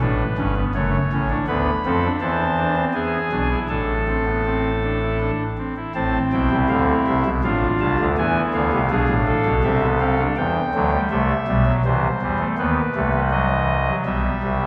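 A pipe organ voiced with a soft, reedy oboe stop and a touch of baroque chiff plays this joyful, elegant baroque-style four-part fugue alone in A minor at 81 BPM in a straight 3/4, its up-front solo line ringing through a long concert-hall reverb heard from further back in the room, as a brief passage cut from a longer piece moves from its opening section into a second one at 6.0 seconds.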